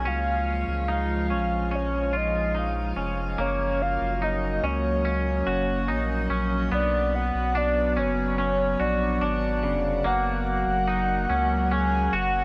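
This dream pop excerpt opens at once with a soft, octave-layered synth lead carrying the melody in a high register, its round tone thickened by chorus and delay and touched with vibrato. Beside it, a twangy, clean electric guitar plays fingered arpeggios, scooped and compressed, bathed in lush chorus and delay. A deep, round sub bass sits up front beneath them. From 0.1 seconds a warbling, tape-like pad adds sustained chords with a nostalgic, lo-fi haze and its own built-in reverb. The mood is blissful and floating in an unhurried straight four, with a long shimmer reverb surrounding the sound as the harmony moves from C# through F# and Bmadd9 and back to F#, the second section arriving at 3.4 seconds.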